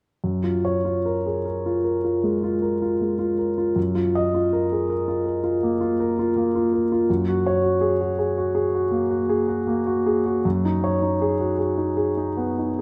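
In a rubato 9/8 lilt of about 48-56 beats per minute in dotted quarters, this hazy, serene fragment of impressionist classical solo piano drifts through Gb major. A single concert grand plays alone from 0.2 to 12.8 seconds, spanning Gb2 to Eb5 with a clear, natural tone, deep bass and long sustain, set up front in a moderate concert-hall reverb. Its lush harmonies move from Gbmaj9 through Ebmadd9/Gb and Gbadd9 to Db11/Gb.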